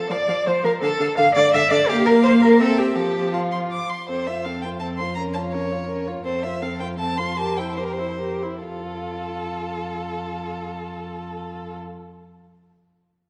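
Spirited and cheerful, this quick classical-period movement for string quartet moves in triple time in F major at roughly 130-170 BPM, with a rubato feel and a pronounced slowing between 5.7 and 8.6 seconds before the music settles back on the home chord. One bowed violin carries the melody high above the ensemble, its vibrato tone smooth, even and set at a distance. A second violin plays a supporting line with a rich, focused sound. Alongside it the viola supplies up-front accompaniment with a smooth top, while the cello anchors the bass with a warm, vibrato-laden voice. The harmony wanders briefly through a darker minor colour before returning home, and a dark production with the wet bloom of a scoring-stage reverb, around 1.8 seconds, wraps this passage cut from a longer piece.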